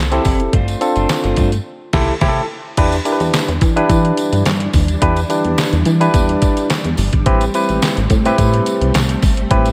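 The straight 4/4 groove at 107 BPM rides on a detuned 8-bit drum machine with a thumpy kick, handclaps and gated reverb up front, joined by a plucky, dark analog bass and a jingly tambourine in the background for a late-night, funky early-eighties boogie funk feel. A barky, lightly overdriven tine electric piano carries the chords, while a clean electric guitar riff with lush chorus sits behind it until 2.4 seconds, and a band accent ends at 2.8 seconds. At that point a vintage string machine enters with full, slow-attack sustained chords over Em7 and later Am9 in this excerpt cut from a longer piece, all set in light digital ambience.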